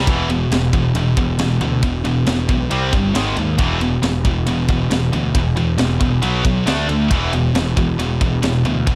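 Two bright, distorted electric guitars open this epic, relentless heavy metal excerpt with picked riffs, one high-gain and up front and the other tucked in the background, alongside a growly, overdriven fuzz bass that also sits up front, while an acoustic kit with a tight kick, high-tuned snare and ride cymbal joins at 0.1 s with a rolled-off top, all in a dark, dry production.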